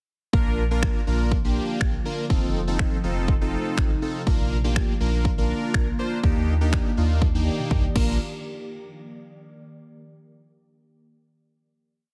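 From the start, a punchy, up-front pop drum kit lays down a four-on-the-floor dance-pop beat at 122 BPM. A deep, round sine sub bass plays a syncopated figure underneath, and a fat, detuned sawtooth polysynth plays sustained, syncopated chords in close voicing with chorus and a moving notch. The bass and polysynth both pump with sidechain compression. At 1.4 seconds a glassy, ethereal FM pad fades in with slow-attack sustained chords, carrying ensemble chorus, phaser, its own reverb and the same pumping. The short, euphoric, summery piece in Bb major cycles through Bb, F7, Bb and Ebmaj7 over a straight 4/4 feel, with kick, snaps, crash and toms in the electronic, layered kit. A drum fill arrives at 7.2 seconds and leads into a final hit at 8.2 seconds. The mix is dry, heavily compressed and radio-ready.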